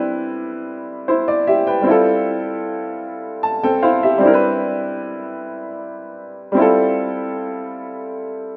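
R&B in a slow 6/8, this short excerpt moves at 51 beats per minute on the dotted quarter, with a straight feel in C major and a sensual, intimate mood. A clear baby grand piano plays alone from start to finish, sitting up front and ranging from G3 to A5. Its chords move between Cmaj9 and Fmaj9, settling back on Cmaj9 at 4.2 seconds before turning to Fmaj9 once more. Between 3.0 and 4.2 seconds the piano adds a short fill, and a slapback echo trails its notes. Light reverb surrounds the instrument, and the overall sound has the rough quality of a home demo mix.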